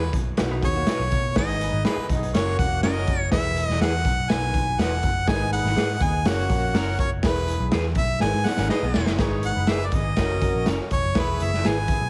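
Driving and passionate, this uptempo 1960s-style soul cut opens on a clear, up-front harmonica solo with light vibrato that runs until 9.2 seconds, over a gritty, saturated garage drum kit with a boomy kick and a foam-muted, round electric bass. Behind them sit a worn baby grand piano with long sustain, twangy, slightly broken-up stabs from an electric guitar through a small old amp, a dark hollow-body archtop riff heard briefly at 0.5 and again at 8.5 seconds, and a distant, roomy horn section carrying a second line from 1.4 seconds. A drum fill at 8.2 seconds leads into a new section, all pressed into a heavily compressed, radio-style sound with light reverb.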